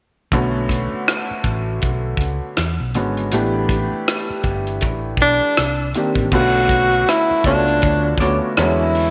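A slow, sultry neo-soul groove in B minor opens at 0.3 s with a woody, slightly detuned upright piano, a round, punchy hollow-body bass and a tight funk kit of kick, hi-hat, rim click and crash cymbal, moving at 80 BPM with a swung 16th-note feel. The piano sits up front with a vintage, long-sustaining tone, while the bass sounds dark and amped and the drums keep a natural small-room character. At 5.2 s a breathy tenor saxophone takes the melody up front, its jazz-style solo phrasing coloured by subtone, vibrato and scooped notes. From 7.4 s an electric guitar through a small old amp briefly adds a picked, slightly broken-up second line in the background, treated with wah and spring reverb. The harmony moves through Bm9, E13, A7sus4 and Cm9 before returning to Bm9, and this smooth R&B excerpt is bathed in a moderate echo-chamber reverb.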